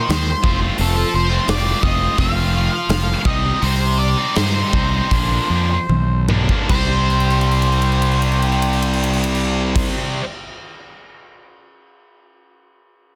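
Cathartic and angsty, this short cut from a longer quiet-loud alternative rock piece sits in C dorian in 4/4 at 73-86 BPM, slowing down from 0.8 to 6.7 seconds as the chords move from F through Cm and Bb to a C5 power chord at 6.7 seconds. A double-tracked, bright high-gain guitar riff and a growly, overdriven fingered bass sit up front, while a dark octave-fuzz lead guitar carries the melody above them. A big acoustic rock kit with a punchy kick and bright cymbals throws in fills from 5.9 to 6.7 seconds and again from 7.1 to 9.8 seconds, carrying on alone until 11.4 seconds, all in a dense, heavily limited modern mix with little reverb.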